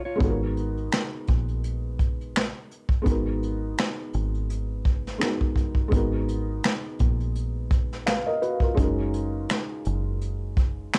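This lo-fi hip hop excerpt, cut from a longer piece, moves at a relaxed 84 BPM in 4/4 with a gentle sixteenth-note swing, settling into a hazy, nostalgic mood in G# minor. A felt-muted upright piano carries the accompaniment from the very start, its thick felt giving a soft, mellow, intimate tone with short sustain and audible action noise, further softened by cassette tape coloring and a low-pass filter. At 0.2 seconds a deep dub fingered electric bass and a vintage brush drum kit join: the bass sits low and round, foam-muted and dark, while the brushed kit brings finger snaps, hi-hat, a medium-tuned snare and a punchy kick with a rolled-off top, and stands as the most prominent part. The harmony rests on G#m9 before shifting to F#6 at 8.8 seconds, late in a second section that begins at 5.9 seconds. Light reverb and a dusky, warm production keep the whole piece close and up front.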